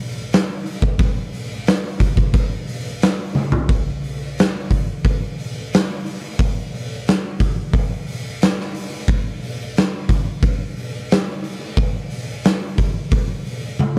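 A gritty, saturated metal drum recording with light reverb sets an oversized low-tuned acoustic kit up front in a big, pumping room, its punchy kick, medium-tuned snare, hi-hat and toms driving a brooding, hypnotic straight 4/4 at 89 BPM from 0.3 seconds, with a drum fill at 3.3 seconds leading into a new section before another fill at 13.8 seconds closes this excerpt.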